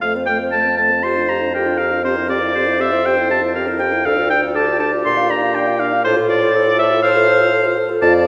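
Graceful and spirited, this brief excerpt from a quick classical-period movement for wind quintet moves at 120 BPM in a straight 4/4, set in F major. The oboe stands up front with a clear, smooth-topped tone and light vibrato, carrying a second line high above the ensemble, while the concert flute sits further back with an airy, hollow sound, its tongued melody colored by vibrato. The bassoon anchors the bass, also up front, its mellow tone smooth on top, and the French horn adds mellow, rounded accompaniment in its middle register. The clarinet joins at 1.0 s with a clean, classical-style accompanying part. The harmony moves from F through Gm7/F and C/F before turning to Dm, Bb and F/A, all heard in a reverberant concert hall with a long, resonant tail of about 2.3 seconds.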